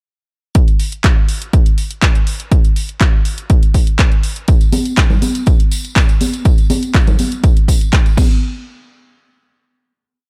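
Funky and nostalgic, this short house piece at 122 BPM drops in at 0.6 seconds, where a dry, punchy electronic kick drives a four-on-the-floor pulse up front beneath a tape-tinged, layered house kit of programmed hi-hats, handclaps and crash cymbal whose hats and cymbals pump with sidechain, joined at 4.5 seconds by bright, saturated tambourine and congas that also pump, before a final hit at 8.4 seconds closes the dark, digitally ambient mix.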